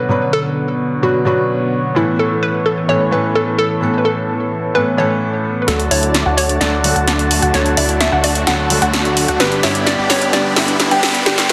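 Uplifting and euphoric, this festival progressive house passage opens with a hollow, warbling square pluck carrying the melody over a soft, felt-muted upright piano placed up front and a lush, airy unison pad whose filter sweeps through the opening bars. At 5.7 seconds the build-up arrives: a punchy, layered big-room dance drum kit rolls in with a fill, joined by a fat analog bass, bright detuned supersaw chords playing a filtered riff in the background, and a sawtooth unison pluck spinning arpeggios. A very quiet riser creeps in at 8.4 seconds, all wrapped in a wet digital room reverb and a dense, heavily limited modern master.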